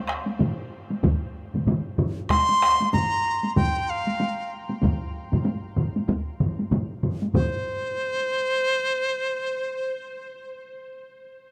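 Heavy-stick taiko ensembles open this ceremonial, powerful Japanese traditional excerpt with a swung pulse, one compressed and saturated, another distant in a large room, and two more in small rooms, one set back in the background, before a bright, up-front bamboo dizi with a buzzing membrane, pure tone, crisp attack and expressive vibrato enters at 2.3 seconds and carries on alone after the drums stop near 7.9 seconds, all within a huge ambient reverb.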